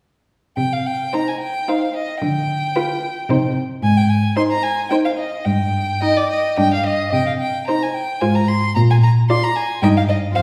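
Heard from further back in a reverberant recital hall, this stormy, dramatic classical-period movement for string quartet unfolds in a quick triple metre with a rubato feel, cut from a longer piece. The cello's smooth, even bass and the first violin's high bowed melody come up front from 0.6 seconds, with both players using vibrato and the cello keeping a smooth top. At 1.1 seconds the second violin's expressive, sliding counterline and the viola's soft-edged accompaniment join, rounding out a rich four-part texture as the harmony moves through C minor and its related chords.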